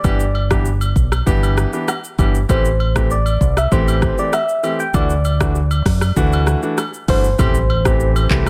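A soft, round FM synth lead carries the melody between C5 and G5 from the very start alongside the full band, with a fast attack, decaying tone, gentle vibrato, chorus and tape echo, over a mellow, hypnotic afrobeats groove at 98 BPM in a straight 4/4. Beneath it, a clear concert grand piano plays intimate, polished accompaniment with long sustain and audible action noise, while a deep dub fingered electric bass sits up front, dark, round and punchy. The afro-pop drum kit is electronic and produced, with a deep kick, metallic hi-hats, rim clicks, handclaps and shaker, all tape-warm and forward in the mix. Quieter agogo bells and woodblock add acoustic, live-room colour alongside a tube shaker and group handclaps. The chords move from G6 to Am7 and Dadd9 in A dorian before returning to Am7 at 7.4 seconds, where a very quiet electronic impact marks the shift into a new section, all set in a digital ambience.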